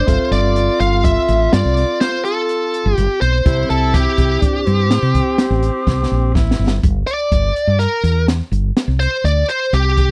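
An overdriven, bluesy lead guitar carries the melody and takes a solo from 6.8 seconds in this driving, intricate progressive instrumental cut from a longer piece in 7/4 at 124 BPM, over a round, hollow-bodied fretless bass, an open jazz kit with a high-tuned snare and boomy kick that plays a fill just before the solo, a clear alto saxophone second line, and a worn, slightly out-of-tune tine electric piano in the background, both of which stop at 6.8 seconds, all in a dry, close 1970s-style studio sound.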